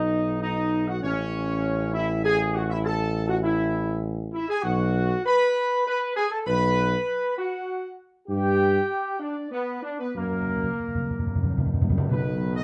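A triumphant, majestic classical fanfare in B mixolydian at 99 BPM in 3/4 opens with a distant, roomy trumpet section carrying the melody over clear, up-front trombone chords, dark French horns in the background with light vibrato, and a soft-attacked tuba bass, and round, calf-headed timpani on soft mallets join with a fill at 10.2 s in this brief cut from a longer piece, set in a dark, warm production with moderate studio reverb.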